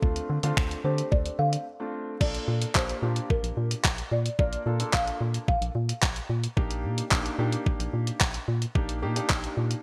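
Carefree and upbeat, this dance-pop excerpt in Bb major moves at 110 BPM with a straight 4/4 feel. A clean 12-bit drum machine with a thumpy kick, snaps, handclaps, hi-hat and crash sits up front in gated reverb. A hollow, percussive organ-like FM bass with sidechain pumping anchors it. A woody, soft-mallet marimba plays the delayed melody until 6.3 seconds over a concert grand piano that is intimate, with audible action noise, lush chorus and pumping. Chords move from Dm7 through a brief break to Bbmaj7 at 2.2 seconds and then to Ebmaj7/Bb at 6.6 seconds, all wrapped in light digital ambience and bright 1980s-style polish.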